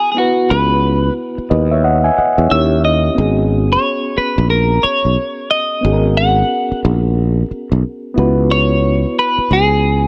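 A growly, punchy fretless electric bass sits up front from 0.5 seconds beneath a clean, picked electric guitar melody with analog chorus and a reedy electric piano with harmonic tremolo in this introspective, soulful neo-soul R&B excerpt at 90 BPM in C# dorian, swung on the sixteenths and dry in the room, moving from C#m11 through D#7b9 and G#m9 before returning to C#m11 at 8.2 seconds.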